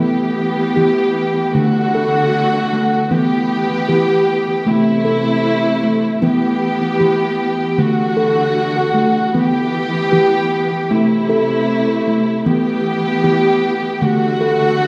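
World meditative tuned percussion in E minor at 77 BPM with a light swing, this hypnotic, gentle passage pairs a round, ringing steel tongue drum played with rubber mallets, spinning airy arpeggios through a delay, over a dark, woody string section holding bowed sustained chords with vibrato, both up front in a wet scoring-stage reverb as the harmony circles between Em, D and Am.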